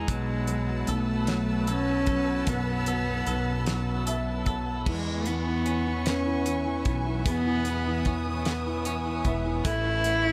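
A heartfelt, tender six-eight pop ballad in which a bowed cello carries the intimate, up-front melody with light vibrato and a soft sul tasto touch, over a warm baby grand piano with long sustain that adds fills at 3.7 and 8.5 seconds, lush studio strings holding chords with expressive portamento, a clean, compressed electric guitar picking arpeggios in the background through tremolo and tape echo, a round, punchy fretless bass with ensemble chorus, and a dry 70s drum kit with a fat snare and tight kick.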